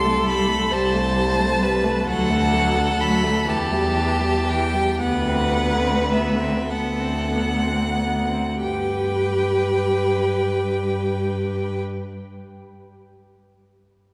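A rich, expressive cello stands up front in this slow, romantic string quartet movement in G major, its soft-attack bass line sliding with portamento and vibrato between C2 and G2. Above it, the first violin carries a tender, lyrical melody between E5 and C6, its clear, smooth tone also placed up front, while the second violin sounds more distant and focused on a supporting line around G4 to C5. The viola fills in the middle with warm, even accompaniment from E3 to G4. In a rubato 6/8 at roughly 30-45 BPM, the music gradually slows from 0.7 to 8.6 seconds as the harmony moves from Am7/C through D, Em and D6 before settling on G at 8.6 seconds, where a new section begins. A long, wet church reverb surrounds the quartet, giving the sound a spacious, resonant hall quality in this short passage cut from a longer piece.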